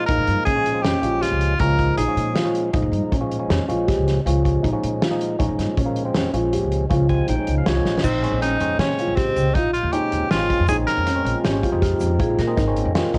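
Intricate and driving, this short cut from a longer progressive instrumental rides an uneven 7/4 pulse with a straight feel and the hazy glow of a home cassette recording in light reverb. An edgy tenor saxophone sits up front with a forceful, punchy pop-style tone, scooped notes and light vibrato, stating the melody briefly at the start and returning at 8.0 seconds. Underneath, a fat, lightly overdriven tonewheel organ with second-harmonic percussion carries the accompaniment and plays a fill just before the second section, while a dark, boxy baby grand piano with short sustain spins arpeggios through tape and analog delay. A woody pizzicato upright bass and a loose indie drum kit with a fat snare and tight kick hold the groove, the kit throwing in a fill as the harmony moves from Bbm7 to Bbm9. A grainy tube shaker slips into the background from 8.0 seconds, and a bright, ringing vibraphone with slow motor vibrato adds a second line near the close at 11.3 seconds.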